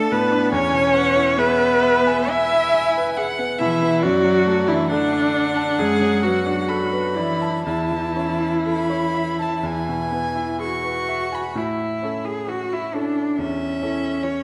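Classical chamber music, this is a slow, romantic movement for piano quartet, serene and lyrical, unfolding in a flexible rubato in four-four time. A solo violin carries the melody with a clear, smooth tone and even vibrato, singing in its upper register. Beneath it, the cello sets out a second line with a rich, focused sound and a smooth top, while the viola, the most up-front voice in the ensemble, fills in the accompaniment with its own rich, focused vibrato. The grand piano adds a bright, brilliant accompaniment spanning from deep bass to high treble. The harmony moves through a gentle progression that settles onto the home chord at 11.6 seconds, opening a new section, all heard in a dark production with a lush scoring-stage reverb, in this passage cut from a longer piece.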